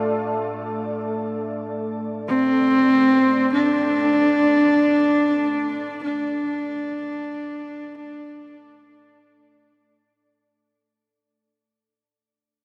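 Over a straight 4/4 pulse, this ominous, cavernous dark ambient drone excerpt rests on a deep, moody pad of detuned sawtooth and sine tones with a sub octave, holding sustained chords on D5 through chorus and shimmer reverb as it fades out across its whole length. At 2.3 s a single bowed horsehead fiddle enters up front, biting and husky with earthy portamento, its melody trailing into delay and shimmer reverb until it stops at 9.7 s. A huge, wet reverb and a cassette-tape grain surround the whole recording.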